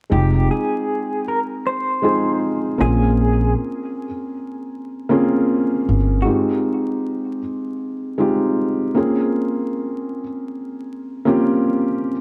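Opening at 0.1 s with a slightly broken-up electric guitar melody through a small old amp, shimmering with tremolo, over woody pizzicato upright bass and a mellow felt-muted upright piano with audible action noise, this melancholic, reflective excerpt of a 78 BPM swung hip hop groove in F minor moves between Fm9 and Bbm9 chords, with the piano carrying on alone after 6.3 s until 12.2 s, all set in a dark production with vinyl crackle and a moderate plate reverb.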